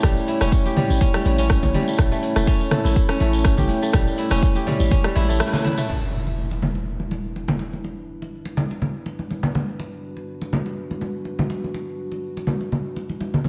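This afro house excerpt opens with a full groove at 123 BPM in 4/4, set in E dorian with a light swing on the sixteenths and an earthy, warm mood. A punchy electronic kick sits up front beside a house kit of metallic hats, crash cymbal, rim clicks and toms, both tape-tinged and re-recorded in a small room, while bright, saturated congas played with soft hands and a jingly, close tambourine fill out the percussion. Underneath, a deep, boomy 808-style bass with a sine tone and fast, decaying attack pumps to the sidechain, as do ringing, crisp fingerpicked kora arpeggios carrying delay and a moody, nasal analog pad of detuned square and sawtooth tones with a sub octave, slow attack, long release and chorus. After a band accent and a drum fill, the harmony moves from A to Em7 at 5.9 s, where an up-front electronic impact arrives just as the bass, kick and tambourine have dropped out, with the kit lingering until 6.0 s. 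Once the kora and impact end at 7.8 s, only the pad's sustained chords and the congas carry on to 13.5 s, all set in a lush hall reverb that gives the mix a dreamy, soft-topped sheen.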